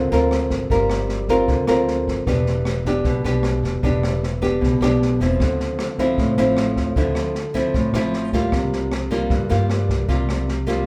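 A fingerpicked nylon-string guitar with an up-front, woody tone and old strings opens this melancholic, smooth bossa nova fragment alongside a thumpy pizzicato upright bass, as a dark, rolled-off jazz kit of boomy kick, rim click and high-tuned snare joins almost at once, the trio playing live in one room with moderate large studio reverb over Gm7, Em7, Dm9 and C7sus4.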